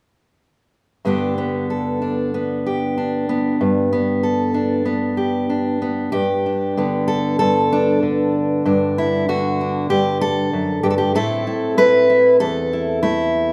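A fingerpicked steel-string acoustic guitar plays alone in this hopeful folk excerpt, sounding up front and warm with audible finger squeak as it moves rubato around 95 BPM in G major from Gadd9 to Amadd9 at 11.2 seconds, set in the moderate reverb of a church or concert hall.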